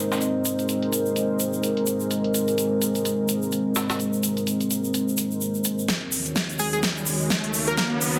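A swung 127 BPM bass house groove in 4/4 opens this gritty, aggressive clip with a gritty, high-tuned breakbeat-style kit of filtered hats and snare, its hats ducking in the mix, and a grainy acoustic tube shaker, beneath dark, detuned analog and mellow ambient pads that hold Abadd9 and Ebm7 chords with chorus and sidechain pumping in a lush hall reverb. At 5.9 seconds a huge-snared, crisp big-room kit takes over up front with a faint punchy electronic kick for a drum fill and build-up, while an electronic riser climbs from 6.2 seconds. A catchy, bright plucky unison lead with dub echo arrives at 6.6 seconds over a dense, heavily limited master.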